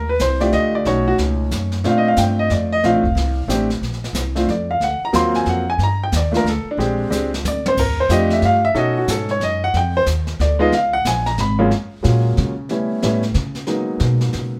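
This is a short section cut from a longer jazz piano trio performance in 3/4, swinging at 182 BPM in Bb major with a warm, playful mood. It opens with a clear, up-front baby grand piano taking a solo from the first moment, its short sustain ranging across extended chords such as Ebmaj9#11, B9 and Bbmaj9. A pizzicato upright bass with steel strings sounds woody and growly beneath it, and a jazz kit played with brushes joins at 0.2 s, bringing dark cymbals, a medium-tuned snare and a boomy kick. The drums offer a brief fill at 7.1 s, and at 11.7 s the bass takes over with its own solo over F#maj7, A9 and G#m9. The trio sounds as if it is playing live together in one room, touched by light reverb.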